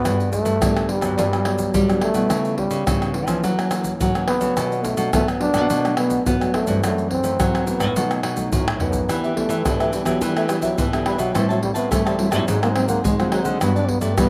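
A raspy, growling trombone carries the jazz-styled solo melody with scooped notes over a joyful, playful samba-choro groove in G major at 106 BPM, backed by a fingerpicked nylon-string guitar, a thumb-plucked nylon-string bass line set in the background, a crisp picked cavaquinho that sounds at the start and returns at 9.1 seconds, and up-front egg shaker, deep surdo, pandeiro and tamborim that break into a drum fill at 8.7 seconds, with slapback echo on the guitar, cavaquinho and percussion in this dry, outdoor-sounding excerpt.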